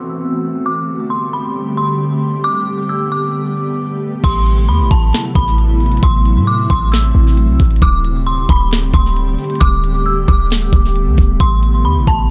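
Set at 134 BPM in 4/4 with a half-time feel, this hazy, melancholic atmospheric cloud-rap excerpt in A dorian is cut from a longer piece, and its trap drum kit only arrives at 4.2 seconds, bringing a knocking kick, a sharp snare, crisp hi-hats and a crash cymbal, all overdriven and re-recorded in a small room, sitting up front. Joining the drums at the same moment, a deep, boomy 808-style bass with a sine tone, a noise layer and a fast, decaying attack anchors the low end. From the start, an eerie, inharmonic FM synth bell carries the high melody, its detuned tone thickened by chorus and trailed by tape echo through a low-pass filter. Beneath it, an ethereal, airy pad of detuned sawtooth and triangle voices with a sub octave holds sustained chords with slow attack and long release, breathing with sidechain pumping and bathed in ensemble chorus and its own reverb. A filter sweep shapes the opening stretch, a very quiet downlifter plays until 0.7 seconds, and the harmony moves between Am69 and D7sus4 within a digital, echo-heavy ambience.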